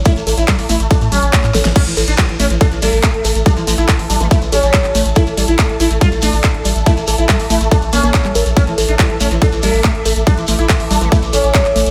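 Psychedelic trance at 141 BPM in A major, this hypnotic, intense cut from a longer piece drives in a straight 4/4 from the first beat. An overdriven, punchy electronic kick sits up front, joined by a big-room dance drum kit with a huge snare, handclaps, hi-hat, ride and crash, also overdriven and set in a small room, with a drum fill at 1.5 seconds before the drop carries on. A round, deep analog bass anchors the low end with a filter sweep. Above it, a buzzing, plectrum-plucked sitar with shimmering sympathetic strings carries the melody through phaser, sidechain pumping and dub echo, while a woody, wave-folded pluck riff with a moving notch sits in the background under chorus and the same echo. A shekere adds a grainy, mellow live-room texture, a cloudy, evolving granular pad drifts in at 2.5 seconds, and a nasal, very quiet vowel-sweep wobble bass surfaces briefly at 4.2 seconds.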